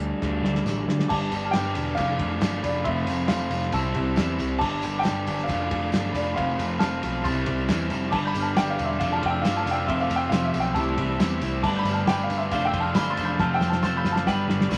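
A straight 4/4 indie rock groove on a cloth-damped, thuddy drum kit with dark cymbals and fills at the start and end carries this carefree, wistful fragment, where an up-front crunchy overdriven guitar riff and a round, punchy overdriven bass sit under a clear, woody upright piano melody, a bell-like glockenspiel line joins at 1.1 s, a distant tambourine jingles in the background, and a clean, compressed twelve-string electric guitar sounds briefly at the start before returning at 8.1 s, all wrapped in moderate studio reverb and vinyl crackle.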